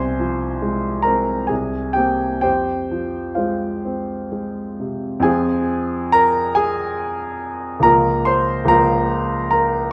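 Classical romantic nocturne for solo piano in F minor, mournful and yearning, moving in a rubato 3/4 at roughly 62-74 BPM. A warm, polished grand piano sits up front and present, spanning C2 to C6 across this short 9.9-second excerpt cut from a longer piece. It is bathed in a wet recital-hall reverb, and the harmony drifts from F minor toward B-flat minor by 7.9 seconds, with a new section opening at 5.3 seconds.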